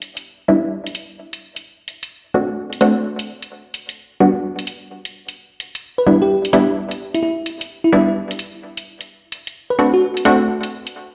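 An overdriven, layered electronic hi-hat opens this bouncy, soulful two-step UK garage excerpt at 129 BPM in E minor with a swung 16th feel, joined at 0.5 s by punchy, detuned sawtooth and square-wave chord stabs under a filter sweep, thickened with chorus and delay as the harmony moves through Em7, D7 and Gmaj7, before a bell-like, sparkling FM electric piano with chorus, tremolo and delay carries a mellow melody from 6.0 s, the whole mix sitting in a big, bare room with a large studio reverb.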